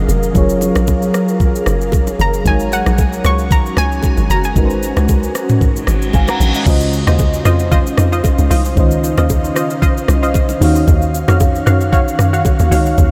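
A dreamy, reverb-soaked mix sets this soulful, relaxed amapiano piece in Db major at 114 BPM, with a gentle 16th-note swing and a huge ambient space around it. A tight, punchy log drum bass sits up front alongside an electronic R&B drum kit with a knocking kick, metallic hats, rim clicks, shaker, toms and crash, while very quiet, close and dry bongos and congas add hand-played texture from 0.1 seconds. A soft, round FM electric piano carries the accompaniment, and an ethereal, airy pad holds sustained chords with ensemble chorus and sidechain pumping, moving from Gbmaj9 to Ab9sus4. A hollow, bouncy square-wave pluck with chorus and delay plays a brief high melody between 2.2 and 4.7 seconds. A reverse cymbal leads into the drop at 6.7 seconds, where the harmony shifts to Dbmaj9 and then Ebm9, and from 7.1 seconds bright sawtooth chord stabs with chorus and delay punctuate the groove until 12.8 seconds.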